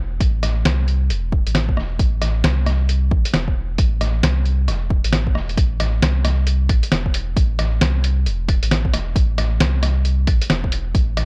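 An overdriven, layered electronic kick sits up front in this melancholic, rainy future garage cut, played at 134 BPM in A minor with a 16th-note swing of 63%. Alongside it, a round, sustained sine sub bass holds the low end with sidechain pumping, while a muffled, pitched-down sampler-style kit adds hi-hat, rim click and a medium-tuned snare. Both drum parts carry the character of a large room, though the mix overall stays fairly dry across the short 11.2-second excerpt.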